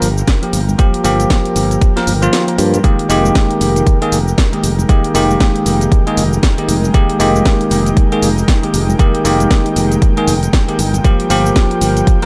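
A swung sixteenth-note groove in four drives this smooth, hypnotic deep house cut, anchored by a punchy, up-front electronic kick that enters at 0.3 seconds and briefly drops out between 2.3 and 2.8 seconds. Around it, a layered house kit supplies hi-hat, shaker and a cracking snare with tape warmth and the air of a large room, while very quiet acoustic congas sit far beneath. A bright, growly fingered electric bass holds the low end, pumping with sidechain compression. Bell-like tine electric piano stabs ring clean and present, carrying a delay and the same sidechain breathing, over a soft, airy pad that fades in and hangs in the background with chorus and a long release. The harmony moves from Gm7 to a long stretch of Fm11 before returning to Gm7, framed by light digital reverb.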